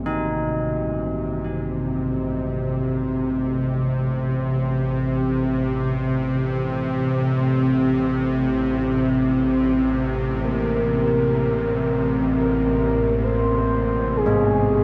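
Dark ambient drone in free time, cavernous and ominous, centered on A locrian and cut from a longer piece. A string-like, tense, nasal drone sits up front for the full 14.8 seconds, its sawtooth unison and noise layer swelling from a slow attack into long sustain with vibrato and its own built-in reverb. Bronze carillon bells ring out arpeggios through tape echo, their worn iron clapper and minor-third overtone bright against the gloom, falling silent at 5.6 seconds before a brief return near 14.3 seconds. At 10.5 seconds the harmony moves from Am7 to G#add9 as a round, horn-like synth lead takes the melody, its soft attack colored by chorus, phaser, tape echo, vibrato and a filter sweep. Almost at the same moment a very quiet quartz singing bowl, struck with a wooden mallet and close-miked dry, adds pure, meditative beating. The dark production sits in a wet cathedral reverb with a 6.6-second tail.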